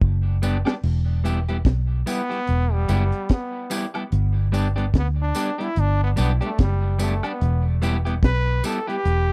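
Roots reggae with a meditative, hypnotic pull, this dry, close 1970s-style studio cut opens with a drum fill on a dark, tight-kicked kit with a high-tuned snare, sits on a round, foam-muted fingered electric bass up front and a clean, picked electric guitar with tape echo, adds tambourine and woodblock, and brings in a brilliant trombone at 2.1 s for a smooth-topped solo with vibrato and tape echo over chords moving between G and E minor.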